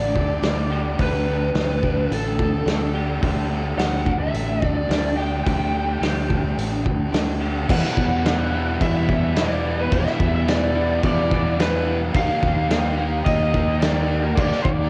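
Shoegaze-leaning dream pop rock in a straight 4/4, wistful and hazy, heard as a short cut from a longer piece. A picked lead guitar through a small cranked amp carries the melody with overdrive, analog delay and a worn cassette-tape tint, set over a bright, twangy twelve-string electric playing compressed arpeggios very quietly beneath. In the background, a crunchy overdriven guitar with reverse reverb and a thick fuzz guitar drenched in lush chorus push riffs, while a fingered electric bass sits direct and warm. A loose indie drum kit, roomy and distant yet up front, with dark cymbals, a punchy kick and a rolled-off top, runs from 0.2 to 14.8 seconds. At 7.7 seconds the harmony moves from Dsus4 to Em7 and a very quiet, double-tracked, dark overdriven guitar joins with another riff, before an Ebmaj7 arrives at 12.1 seconds. The whole has the light reverb and small-room intimacy of a home cassette recording.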